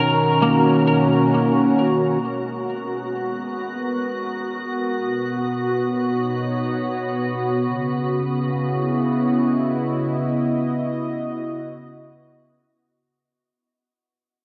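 Drenched in a huge, wet reverb, this peaceful, luminous ambient fragment in 3/4 opens with a bright, clean semi-hollow electric guitar playing fingered arpeggios through analog chorus and delay, and it stops at 2.3 seconds. A smooth, detuned sawtooth analog pad holds sustained chords, fading in from 2.2 seconds, while a calm, organ-like sine drone with ensemble chorus and its own reverb hums alongside it. Everything fades out from 9.4 seconds as the harmony moves from D#m7 through G#m9 and Bmaj9 to C#m9.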